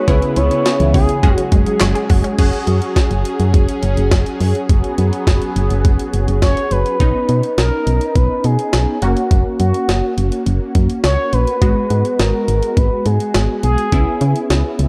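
Synth-pop with a bright yet wistful mood, this excerpt from a longer piece moves in a straight, steady four. A jungle-flavoured, sampler-style drum kit sits up front with gritty, compressed, pitched-up hits: a thumpy kick, high-tuned snare, hi-hat, handclaps and crash cymbal. Beside it, a round, punchy FM bass with fast-attack, decaying digital notes anchors the low end, while a funky polysynth comp of detuned sawtooth and pulse waves runs throughout with a filter sweep and a moving notch. In the opening moments a squelchy, resonant blip pluck plays background arpeggios through a phaser and slapback echo until 2.3 seconds, and a swirling, vintage analog pad holds evolving, warbling chords until 7.0 seconds. A smooth, expressive sawtooth lead with vibrato and chorus carries the melody, briefly at the start and again from 6.4 seconds, over a dark production with light reverb.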